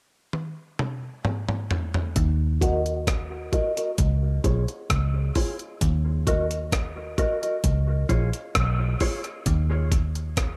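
A slow, straight dub reggae groove opens with a gritty, compressed breakbeat drum fill at 0.3 seconds, its thumpy kick, hi-hat, rim click and toms pitched up and sitting up front, before a dark, round, foam-muted picked bass enters at 2.2 seconds as a filter sweep runs through the rest of this cut from a longer piece. At 2.6 seconds a mellow, clean, fingered electric guitar adds low-passed, dub-echoed accompaniment, joined by a brief stab from a reedy, worn, slightly out-of-tune electric piano in the background. The echo-heavy mix carries light reverb and digital ambience, giving the meditative, heavy track its spacious haze.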